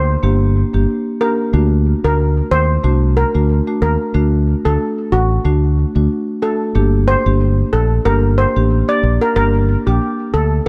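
A swung sixteenth-note dancehall groove sets a hypnotic, bouncy mood in this short cut from a longer piece: a punchy, up-front fingered electric bass anchors the low end while a warm marimba played with medium mallets adds accompaniment from 0.2 seconds, and a shimmering, metallic double-seconds steel pan struck with medium rubber sticks carries the close-miked melody through tape echo, all set in a small room as the harmony moves from G minor to D before returning to G minor at 6.8 seconds.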